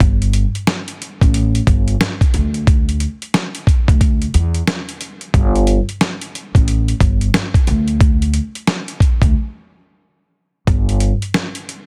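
Confident and soulful, this boom-bap hip-hop cut rides a 90 BPM swung groove, with a gritty, compressed sampler-style drum kit of thumpy kick, fat snare and hi-hat sitting up front beside a woody, growly pizzicato upright bass that holds its low register until 11.1 s, all in a dry, dense, heavily limited mix that pauses for a break at 9.3 s.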